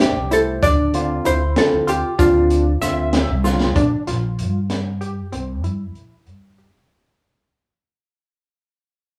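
In a straight 5/8 at 192 eighths per minute, this driving, intricate progressive band piece in D minor opens with a dark, clean hollow-body jazz guitar melody up front over a barky, bright tine electric piano, a tight detuned sawtooth synth arpeggio with chorus, a woody, growly pizzicato upright bass and a gritty, saturated breakbeat kit with a high-tuned snare, while a grainy egg shaker sits in the background. The guitar drops out at 3.4 seconds as the drums play a fill, and from 3.8 seconds the piano is gone and the remaining synth, bass and drums move from Am7 and Dm7 to Bb and C as the music fades out. The band sounds as if playing together in a small room with moderate reverb, and the clip is cut from a longer piece.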